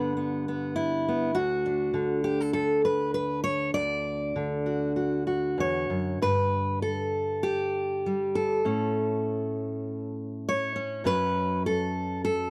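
In a loose, rubato 4/4, this hopeful folk fragment from a longer piece features a lone fingerpicked steel-string acoustic guitar with a warm, auditorium-sized body, spanning D2 to D5 and tuned to A4 = 437 Hz, moving from G through a chordless stretch to D before a second passage at 6.2 seconds turns through G, A and F#m, captured up front in a dry, close 1970s-style studio sound.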